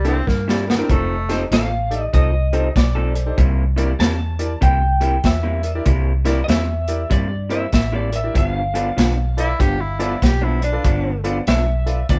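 An electric slide guitar carries the melody from 1.5 seconds onward, its slightly broken-up, compressed tone singing high over a gritty, soulful electric blues shuffle at 96 BPM with a swung feel. Beneath it, a crunchy breakbeat drum kit sits up front with a tight kick and a saturated, rolled-off top, opening with a quick fill, while a vintage muted electric bass adds a round, punchy, foam-muted low end. An electric guitar through a small old amp plays a dark, lo-fi riff, and a clear concert grand piano fills in the accompaniment with a smooth, vintage character. A forceful tenor saxophone adds a second line in short bursts at the very start and again at 9.4 seconds, with scooped notes and light vibrato in a jazz style. The band sounds as though it is playing live in one room with light reverb, moving through C7, F7 and G7 in this brief excerpt cut from a longer piece.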